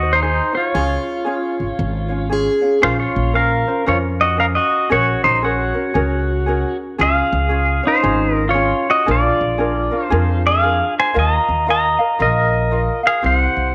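Relaxed and languid, this swung Hawaiian excerpt puts a bright, twangy pedal steel guitar up front on the melody with volume swells and slide over fingerpicked ukulele and a woody, growly pizzicato upright bass, while a boxy plugged-in acoustic guitar with audible finger squeak adds a brief second line before stopping at 2.8 seconds, all set in a moderate echo-chamber reverb with small-room ambience.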